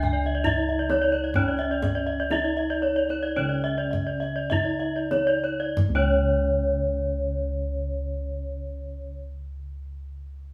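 Balinese gamelan in a brilliant, ceremonial mood, heard in a short section cut from a longer piece, moving in a straight 4/4 that slows down over the first 5.8 seconds. Three bronze metallophones struck with horn mallets carry the music: one plays the melody in the middle register while two others spin arpeggios above it, their bright, ringing tone shimmering with the beats of paired tuning. Bossed gongs hold the bass with a round, full sound, miked close so they sit dry and up front. The passage moves into a second section at 5.8 seconds, and a kendang adds deep, dry acoustic drumming until it stops at 6.4 seconds. The ensemble plays live together in one room with moderate studio reverb giving the airy metallophones space around their metallic ring.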